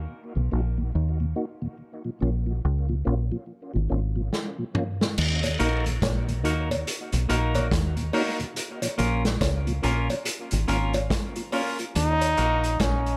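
A small-room recording with light reverb carries this meditative, spacious dub reggae excerpt, which opens on a break where a round, foam-muted bass and a mellow tonewheel organ, turning on a slow rotary speaker with chorus vibrato and dub echo, ride a filter sweep. A drum fill at 4.3 s brings in the up-front vintage kit, with its punchy kick and dark, rolled-off cymbals, followed by a close, dry jawbone-type rattle and cowbell sitting in the background and a clean, twangy picked electric guitar, both trailing dub echo. At 12.0 s a brilliant solo trombone with light vibrato steps to the front, its line trailing dub echo.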